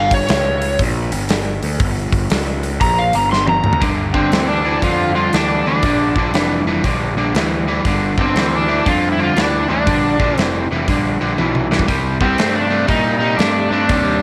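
A small room ambience and light reverb frame this gritty, heavy blues rock and southern rock passage in G minor, cut from a longer piece and moving at 119 BPM with a swung 4/4 feel. A warm, overdriven slide guitar carries the melody and solos through the opening. Beneath it sit a bright, growly fuzz bass and a big acoustic drum kit with a punchy kick, a medium-tuned snare and fills at 3.3 and 11.4 seconds. At 3.8 seconds a double-tracked, compressed second electric guitar enters with a riff as the harmony shifts from Gm to Gm7, later reaching Cm7.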